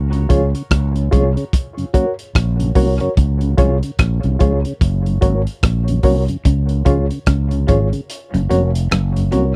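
Hazy and spacious, this dub reggae excerpt in Db major rolls along at 73 BPM with a swung feel, driven by a growly, amped fretless bass up front and a crunchy, saturated breakbeat kit of tight kick, hi-hat and rim click with a rolled-off top. A dark, round tonewheel organ with chorus vibrato and slow rotary speaker sits in the background, while a worn, reedy, slightly out-of-tune electric piano adds stabs through fast tremolo and dub echo. At 6.5 seconds a twangy, picked guitar at the edge of break-up enters with an echoing riff, and the kick drops out at 8.1 seconds in this dry, close, 1970s-style studio sound.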